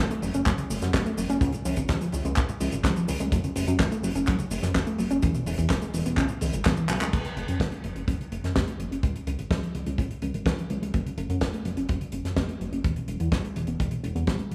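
A damped 70s drum kit opens this danceable, nostalgic italo disco excerpt, with a fat snare, dark cymbals, cabasa, hi-hat and handclaps sitting up front, plus a crash, and a tight, dry kick drum soon joins to drive it. A glossy, chorused synth bass and a soft, round, warbling pluck playing arpeggios both run through tape echo, over a minor-key progression that returns to its opening chord. A drum fill at 6.9 seconds leads into a filter sweep on the arpeggios from 7.1 seconds, all set in a dreamy mix soaked in plate reverb.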